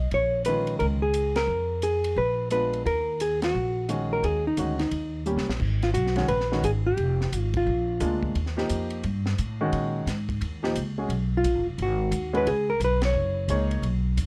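Dark, lightly reverberant production frames this moody, late-night excerpt of small-group swing and bop in Eb minor at 175 BPM, where a clean, fingered hollow-body jazz guitar carries the melody up front, pausing after 8.2 seconds and returning at 11.4, over woody pizzicato upright bass, an intimate baby grand piano with audible action noise and short sustain, and a compact cocktail drum kit with a high-tuned snare and punchy kick that plays a brief fill at 5.3 seconds, the band hitting accents together along the way.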